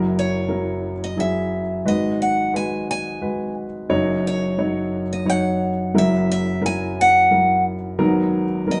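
A picked acoustic archtop guitar with a woody, boxy tone and the ring of old strings carries the melody up front from 0.2 seconds, over an intimate grand piano whose action noise is audible beneath its accompaniment. This reflective, heartbroken folk-pop ballad in G# minor moves at 88 BPM in a straight 3/4, cycling through F#7, G#m7 and D#m7/F# before settling on G#m9 at 8.0 seconds. The duo plays live in one room, with a wet studio reverb and a soft top end that stops at 10.5 kHz, lending the sound a close, mellow glow.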